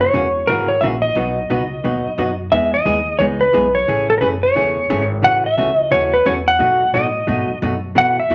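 This western swing country clip moves at a cheerful, swinging 176 BPM in 4/4, with swing on the eighth notes. A clean electric lap steel guitar sits up front and carries the melody, its slide and volume swells giving a warm, compressed voice that stays in a higher register. Beneath it, a hollow-body jazz guitar, picked and dark in tone, plays the accompaniment, also placed up front and compressed. A pizzicato upright bass with gut strings supplies a woody, thumpy low end, sitting lower in the mix. The harmony moves through F#7, B, Emaj7, Amaj7, F#m7/A and B7, all three instruments playing together for the full 8.3 seconds inside a moderate large-studio reverb.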